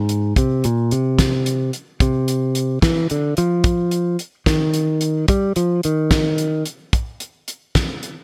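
Nocturnal and slick, this short cut from a longer electric jazz fusion piece moves in a straight 6/8 at 73 BPM, with a bright, direct fingered electric bass taking an up-front solo between Ab2 and G3 until 6.6 seconds over a damped 70s drum kit of hi-hat, tight kick and fat snare, its dry acoustic sound touched by gated reverb and running to 8.2 seconds, all in a crisp 1980s-style digital production with little room ambience.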